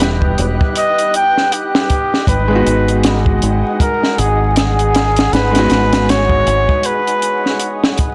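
A bucket-muted trumpet carries a veiled, soft-edged melody from the first moment, set over felt-muted upright piano, a dark analog pad, deep dub bass and a compact cocktail drum kit in this smoky, melancholic trip hop fragment cut from a longer piece. The tempo sits at 79 BPM in 4/4 with a lazy 16th-note swing, and the harmony moves from E minor to G#m7 at 2.3 seconds. The trumpet sits up front in a mellow, classical style, trailed by tape echo, while the intimate piano adds tremolo, 12-bit sampler grit and its own tape echo, with audible action noise under the thin felt. Behind them, a detuned, chorused pad with a slow attack and long release lingers in the background, joined by a quiet flickering, granular texture bathed in its own reverb. The punchy kick, high-tuned snare and hi-hat of the rolled-off kit stay close and up front, and the round, tube-saturated fingered bass drops out at 6.7 seconds. 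A small room, vinyl crackle and a blown-out, overdriven finish give the whole recording a dusty, saturated sound.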